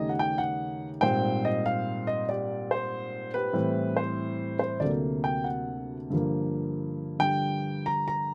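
Solo jazz at 94 BPM in 4/4 with a swung, rubato, playful feel: an upright piano, woody and intimate with audible action noise and long sustain, sits up front in close, detailed sound with light reverb, spanning D2 to Bb5 as it moves through Ebaug7, Abmaj9, Am7, D7b13 and Gm7 across these 8.3 seconds cut from a longer piece.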